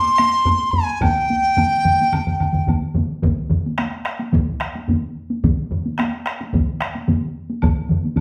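This is Japanese traditional taiko drum ensemble music, a powerful, driving passage cut from a longer piece, moving at 109 BPM in a straight 4/4 and tuned to A4 = 439 Hz. A bamboo dizi opens the melody, its breathy, mellow tone carrying a buzzing membrane, a soft attack and a slightly unsteady straight pitch between G5 and C6, before it falls silent at 2.7 seconds. Beneath it, a solo taiko and a taiko ensemble struck with heavy sticks sound close and dry, and two more taiko ensembles join at 1.0 seconds, one heavy-sticked and up front in a small room, the other played with hard sticks. A woody, vintage-sounding woodblock with a band-limited character sits in the background early on and comes back at 7.6 seconds. The group plays live in one room, bathed in a wet, large studio reverb, and the passage moves from its opening dizi section into a second, percussion-driven section.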